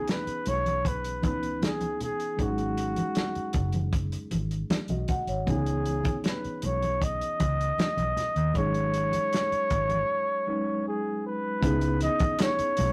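A straight 4/4 groove at 78 BPM carries this smooth, silky 1970s-style soul piece in C# minor: a dry, muffled soul drum kit with a tight kick and a dark, round, foam-muted electric bass sit under damped, low-tuned congas in the background, while a breathy, vibrato-laden flugelhorn sings the up-front melody with scooped notes over worn, slightly out-of-tune tine electric piano chords moving between C#m9 and G#7sus4, a break arrives at 10.1 seconds, a very quiet, hollow group handclap appears at 12.4 seconds, and the rough rehearsal-room recording adds moderate reverb and warm saturation.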